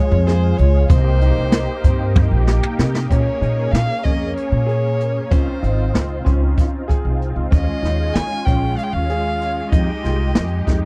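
Progressive instrumental band music in an uneven 7/8 meter, driving and brooding, with a smooth, bowed solo violin carrying the melody over a silky, chorused analog string pad and clear, short-sustained grand piano arpeggios. A woody, growly pizzicato upright bass and a brushed drum kit with a boomy kick sit up front, the kit playing a fill from 2.2 to 3.1 seconds that leads into the second section, where the harmony moves through Bbm7, Dbmaj9 and Eb9sus4 before settling on Fm9. The sound is dry and close, in the manner of a 1970s studio, and this is a cut from a longer piece.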